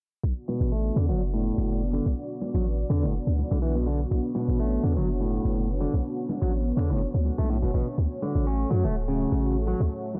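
Raw and swaggering, this breakbeat cut from a longer piece moves at 124 BPM in 4/4 with a light 16th-note swing, set in B minor and tuned to A4 = 435 Hz. A deep, boomy 808-style bass with a sine body, a noise layer and a fast, decaying attack sits up front. Beside it, a twangy, fingered electric guitar at the edge of break-up plays a riff through a low-pass filter and delay. A thick sawtooth-and-square unison pad with detuned voices, a sub octave, slow attack and long release holds sustained chords under chorus and phaser, while bright, vintage-sounding congas stay in the background and a very quiet, overdriven electronic tambourine sits underneath. A filter sweep runs across the bass, guitar and pad through the whole passage, all set in a digital ambience, as the harmony rests on Bm before moving to Dmaj7 at 8.0 seconds.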